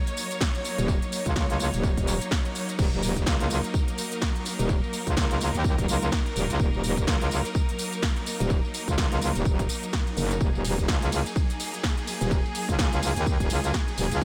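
A clear, lush studio string section opens this bouncy, aggressive bass house excerpt with bowed, vibrato-rich sustained chords that pump against the beat. A big-room dance kit with a punchy snare, crisp hats, crash, ride and tambourine enters at 0.1 seconds, followed by a tape-warm electronic kick sitting up front from 0.4 seconds. At 0.8 seconds a metallic FM wobble bass arrives, saturated, compressed and thickened with chorus, pumping beneath a single minor chord in a light reverb, all with a swung sixteenth-note feel.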